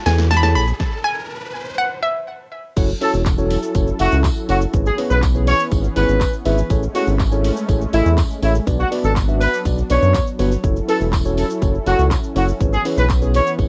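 Driving and confident, this dance-pop piece opens on a short build-up, where a hollow, bouncy square pluck carries a high melody through chorus, tape echo and a cassette-tape haze. An electronic riser sits under it until 1.8 s, while a drum fill kicks off the house kit and a filter sweep builds over a brief stop. The drop arrives at 2.8 s, when a smooth, detuned analog pad fades in behind everything with sidechain pumping, and a roomy horn section with light vibrato takes the lead soon after, tape echo trailing its phrases. Underneath, a deep, round analog bass sits up front and pumps against the punchy kick and snare, bright hats, claps and shaker, with a jingly tambourine buried low in the mix. A mellow, clean tine electric piano fills out the accompaniment through the progression from F#m7 to C#m7/G#, Amaj7 and Bm, all bathed in light reverb and the soft grain of a cassette home recording.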